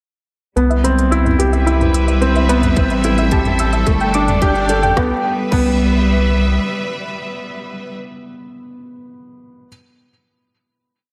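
A straight four-on-the-floor electronic kick arriving at 2.8 s anchors this tender, hopeful piano and strings electronica piece, where a felt-muted upright piano with audible action noise loops an intimate riff through tape echo, a soft round pluck spins chorused arpeggios in the background, a deep analog bass holds sustained roots, a woody, crisp-hatted drum kit keeps a restrained pulse, and a clear symphonic string section's bowed, vibrato-rich chords, like the pluck, pump with the sidechain and move through a filter sweep over a short build before settling on a final chord at 5.0 s, all soaked in a dreamy hall reverb.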